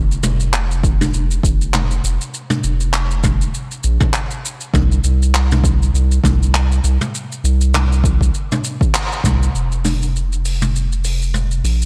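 A relaxed groove in four, swung on the sixteenths, drives this sunset chillout cut, carried by an up-front jazz brush drum kit with handclaps, hi-hat, shaker and toms in a natural studio room. A round, deep analog bass with a dark, sine-like tone holds the low end throughout, while an overdriven, punchy electronic kick enters at 0.8 seconds and stops at 9.4 seconds, just after a band accent at 8.9 seconds and shortly before a new section begins at 9.5 seconds. The sound is dry and gritty, with little reverb.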